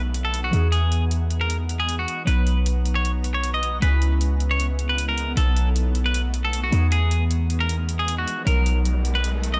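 Over a swung, half-time future bass groove with a metallic electronic hi-hat, a deep, boomy 808-style bass sits up front beneath glassy digital keys with chorus and tape echo, a shimmering, ethereal ambient pad in the background, and a bright, twangy clean electric guitar melody, while a downlifter opens this euphoric, lush clip and a riser arrives at 8.3 seconds.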